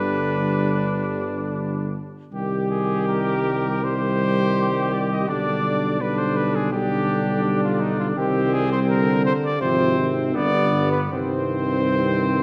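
A wet, roomy scoring-stage reverb surrounds this short classical brass quintet fragment in C minor, which moves at about 82 BPM with a heroic, solemn air and an elastic, rubato pulse. Up front, a clear cornet carries the melody, while a punchy, distant trumpet with vibrato sings a second line. A mellow French horn and a warm trombone, both with light vibrato, sit in the background as accompaniment above a present tuba bass, all five playing throughout as the harmony settles from G onto C minor at 11.1 seconds.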